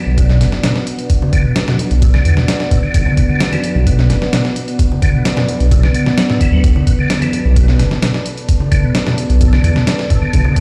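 A deep, moody pad opens this swaggering, energetic breakbeat cut in B minor, holding sustained chords that warble with chorus and pump under sidechain, resting on a Bm chord throughout the 10.6-second fragment of a longer piece. Almost at once a thick, menacing detuned saw bass arrives up front, its beating, dark tone pushed through tube saturation. A piping, scooped tonewheel organ plays a riff through fast rotary speaker, chorus vibrato and delay, its key click audible over a clean tone. A gritty, sampler-style soul drum kit drives a straight 130 BPM groove with a thumpy kick, medium-tuned snare and hi-hat, compressed and tape-colored in a small room close to the listener. Bright acoustic congas enter at 1.2 seconds, distant and tucked into a large room behind the kit. The whole mix sounds as if played on a big system in a bare stone room, adding a stone room reverb.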